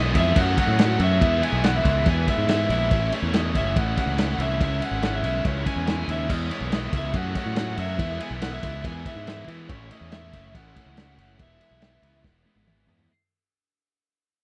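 Upbeat and carefree, this 141 BPM indie rock cut in E major sets a dark, distorted bluesy lead guitar with slapback echo and a soft, bell-like glockenspiel played with rubber mallets over two picked riff guitars (one crunchy and overdriven with ensemble chorus and slapback echo, the other scooped and high-gain), a growling, up-front fingered bass and a muffled, punchy vintage drum kit in a dry, close 1970s-style studio sound, fading out from 0.9 seconds until the lead and glockenspiel stop at 12.2 seconds and a drum fill carries it to 13.1 seconds.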